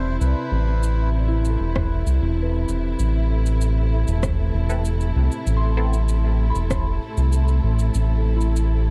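Meditative and deep, this short ambient dub excerpt moves at 97 BPM in a straight 4/4, centred on A minor and opening on an Amadd9 chord. A reedy, breathy melodica voices a brief phrase with dub echo in the first 1.1 seconds, over lush, distant bowed strings that hold sustained chords with gentle vibrato throughout. A round, detuned analog bass sits up front with a dark sawtooth-and-sine body, while a soft FM synth bell traces mellow, decaying arpeggios in the background through chorus and dub echo. An overdriven electronic shaker and rim click, also echoed, run nearly the whole length, joined at 1.8 seconds by a punchy, layered kick that stays low in the mix. From 4.7 seconds a muted, full-bodied filtered chord stab with a plucky short decay drifts in behind, coloured by phaser, analog chorus and dub echo, all within a dry, dark production.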